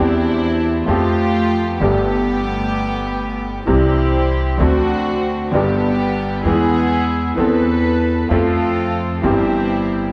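An up-front, clear concert grand piano with deep bass and short sustain carries the accompaniment in this sultry, passionate rubato tango fragment, while a distant, floating string section adds soft-attack bowed stabs played sul tasto, and a woody, thumpy pizzicato upright bass anchors the low end, all three playing throughout the 10.1 seconds in a resonant hall with a 1.7-second reverb tail as the harmony moves from Cadd9/E through Fadd9, Gadd9 and D7 to close on C/G.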